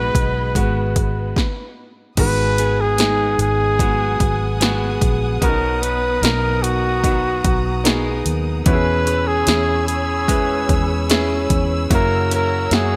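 A close-miked flugelhorn carries the melody from the first second with a jazz-style vibrato, over a clear grand piano and a dark, distant symphonic string section holding lush, woody bowed chords in this tender, emotional pop ballad at 74 BPM in 4/4 with a straight feel. A foam-muted fingered electric bass gives a round, amped low end, while a clean, direct-recorded electric guitar picks compressed arpeggios, sitting very quiet in the mix. A punchy analog drum machine with kick, snare, hi-hat and crash sits up front from 0.1 seconds, its dry hits overdriven and treated with gated reverb. A brief stop falls between 1.4 and 2.2 seconds before the next section opens. The harmony moves from G#m7 to Bmaj7, E6 and F#7, framed by light reverb and a bright 1980s-style digital production in this excerpt from a longer piece.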